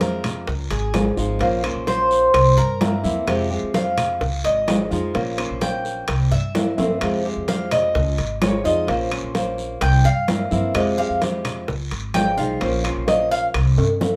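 Sultry and danceable, this Cuban son and guajira excerpt moves at 128 BPM in F minor, cycling through Dbadd9, Bbmadd9, C7 and Fmadd9 as an up-front picked Cuban tres with metallic double strings spins soloing arpeggios over a fingerpicked flamenco guitar with fresh strings. A woody, thumpy upright bass on gut strings sits up front. Ringing metal-shell timbales and a raspy guiro join damped vintage-sounding congas, tight high-tuned bongos and dry claves, with the last three sitting in the background. Drum fills land at 6.8 seconds and 13.8 seconds, all within a moderate studio ambience.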